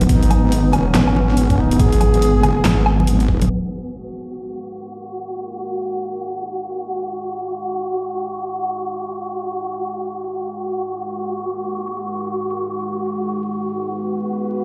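In free time, this meditative, cavernous deep dubstep excerpt opens on a drop: a heavy, saturated wobble bass sits up front beside an overdriven, knocking electronic kick and a dubstep kit with a huge snare, bright hats, handclaps and woodblock, while close, dry congas sit in the background. Over this, a mellow duduk sings a folk-style solo with vibrato and scooped notes through dub echo. By 3.5 seconds the beat, bass, congas and duduk have fallen away, leaving a dark, full-bodied analog pad with chorus under a filter sweep and an airy, wind-like noise texture that carry on until 14.6 seconds, all set in large studio reverb with vinyl crackle and the feel of a big sound system in a bare room.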